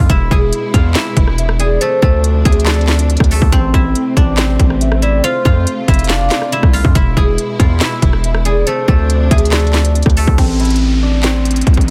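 A half-time trap groove in 4/4 drives this dark, melancholic hip hop excerpt, built on an up-front electronic kit of hard-clipped kick, sharp snare, crisp hi-hats, handclaps and rim clicks that enters at 0.1 seconds. Beneath it, a distorted, saturated 808-style bass sits heavy and aggressive, each note decaying after a fast attack. A fingerpicked guzheng carries the melody with a silvery, ringing tone softened by a low-pass filter, while a lush, bowed symphonic string section holds vibrato-laden chords in the background until 10.4 seconds. From 1.4 seconds, a hollow, woody synth lead resembling a clarinet adds a mellow second line, colored by chorus, phaser and delay. The harmony moves through E, Dm7, Am and F, and in the closing stretch over the final Am chord, a filter sweep on the guzheng and an electronic downlifter carry the music out.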